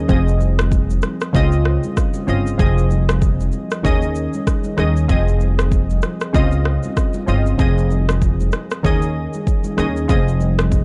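Mellow and hypnotic, this short afrobeats cut from a longer piece moves at 96 BPM in 4/4 with a swung sixteenth-note feel, settled in F minor. Glassy digital keys carry the accompaniment, their airy, detuned tone built from sine and triangle layers with a sub octave, a noise layer and a filter sweep, each fast-attack note decaying through a chorus effect. A woody, dark upright bass sits up front with steel-string pizzicato, anchoring the low end alongside an electronic afro-pop kit whose deep kick, rim click and shaker come in at 0.1 seconds. Very quiet congas join at the same moment, ringing and distant in a large room under soft hands. The harmony circles Fm7, Dbmaj9 and Eb7sus4 before landing back on Fm7, and the whole passage has a dry, gritty hardware character with transformer saturation and a dulled top end.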